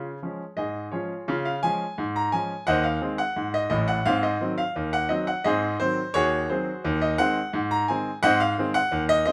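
A straight 2/4 pulse at 86 BPM drives this jaunty, lively ragtime piano cut from a longer piece in Db major. A solo concert grand, up front and brilliant with deep bass and short sustain, spans A1 to Bb5 across the full 9.3 seconds, moving from Db through Ab/Eb and Ab7/Eb before landing on Ab at 8.2 seconds. Moderate studio reverb surrounds its bright, open tone.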